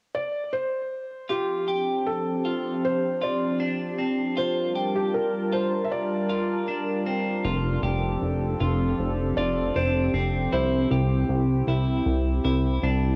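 A soft, intimate felt-muted upright piano with audible action noise carries the melody through analog delay in this floating, ethereal dream pop excerpt, soon joined by bright, twangy clean electric guitar arpeggios at 1.3 seconds and a warbling, nostalgic tape-like pad holding sustained chords, before a glossy, retro chorused synth bass enters at 7.4 seconds, the whole set in a moderate spring reverb with the character of a home cassette recording.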